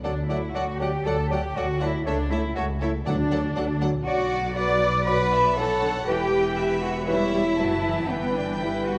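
Graceful and lively, this quick classical-period movement for symphony orchestra moves at 119 BPM in 4/4 with a rubato feel, and it is cut from a longer piece. A chamber violin section carries the melody with rich, focused vibrato, while a second violin section in the background, an airy flute section and a warm clarinet weave supporting lines alongside it. A mellow bassoon and a smooth-topped viola section fill in the accompaniment, and a very quiet, tight French horn section holds sustained chords. Up front, an even cello section anchors the bass alongside a distant, softly attacked double bass section. Timpani struck with hard mallets add a brief, articulate accent from 3.1 to 3.8 s, and the whole ensemble sits in a moderate concert hall reverb as the harmony moves from D through Bm to Em.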